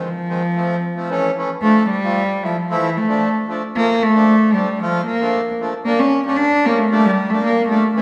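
Klezmer in D harmonic minor at 113 BPM in 2/4, soulful and festive and speeding up throughout, with a single bowed cello carrying the melody up front in a soft-attacked, sul tasto, pure and floating voice over reedy, airy accordion accompaniment, the two playing live together in a large studio bathed in lush reverb as the chords move from Ab, F and A to a long Dm before turning to Gm at 5.9 seconds in this short excerpt from a longer piece.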